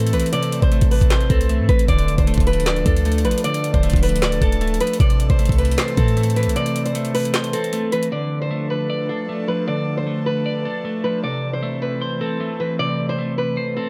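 A half-time trap groove at 154 BPM drives this melancholic, hard-hitting hip hop excerpt, with a knocking kick, woody snare, handclaps and metallic hi-hats sitting up front in the electronic kit. A deep, boomy 808-style bass with a clean sine tone, fast attack and dark decay anchors the low end until it stops at 6.6 seconds, and the drums drop out at 8.1 seconds after a short break. Over the top, a small, fingerpicked nylon-string guitar with fresh strings carries the melody up front, softened by a low-pass filter and trailed by digital delay. A clean, picked electric guitar with a compressed, scooped tone supplies accompaniment through analog chorus and a low-pass filter, while an airy, breathy pad of detuned triangle and sawtooth layers with a noise texture holds slow-attack chords beneath. The harmony moves between A minor and D minor under light reverb, and the last stretch leaves the guitars and pad alone to carry the mood.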